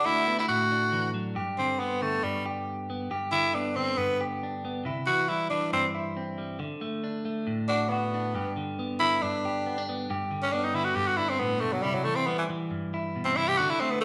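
A raspy, gritty tenor saxophone sits up front and close, carrying the melody with vibrato and scooped notes before taking a pop-style solo from 1.4 s to 14.0 s. It plays over a clean, picked electric guitar, compressed and also up front, that accompanies throughout. This joyful, danceable highlife moves at 138 BPM in straight 4/4 in G major, tuned to A4 = 443 Hz, cycling through D, G and C, with the band playing live together in a large studio with a wet reverb.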